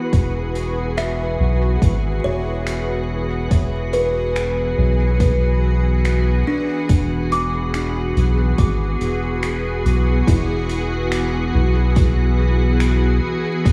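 A deep, tape-warm electronic kick anchors a steady, straight four-beat pulse, joined by a soft-mallet kit whose finger snaps and hi-hat ring out in a big-room space and trail off in dub echo. Underneath, a round, soft sub bass sits up front, while a bright, organ-like pad holds calm, chorused chords that blur into its own reverb. A buzzing, woody kalimba plays arpeggios in the background through tape echo. An airy, breathy wind-like texture drifts in the background until 10.3 s, when the harmony moves from E9 to Eadd9 for the closing section. This peaceful, hazy ambient dub fragment is wrapped in vinyl crackle and light small-room ambience.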